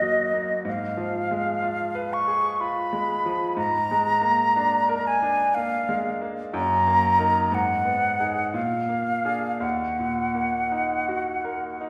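A concert flute carries the melody up front, its pure tone shaped by gentle vibrato and soft attacks into an expressive, yearning line that sits high in its register. Beneath it, a grand piano supplies the accompaniment, its bright, polished sound reaching from the deep bass into the middle of the keyboard and staying present, though a touch lower in level than the flute. This short cut from a longer romantic classical duo moves in a slow, solemn triple metre, with rubato giving the phrasing a breathing, pliant feel. The harmony leans on a diminished chord and dominant sevenths before settling back onto the minor tonic near the close at 9.6 seconds. A reverberant recital hall surrounds both instruments, lending the brilliant piano and the singing flute a spacious, church-like resonance across the full 11.9 seconds.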